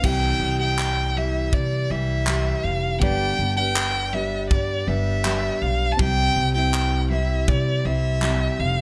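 A straight 4/4 pulse from a polished studio drum kit, with its tight kick, handclaps and crash cymbal, carries this tender, reflective acoustic pop excerpt, where an up-front, bowed solo violin sings the melody with vibrato and portamento over a woody, growly pizzicato upright bass, a finger-squeaking picked steel-string guitar and a very quiet, reedy electric piano moving from C to G and back to C in light reverb, the drums dropping out at 8.4 seconds.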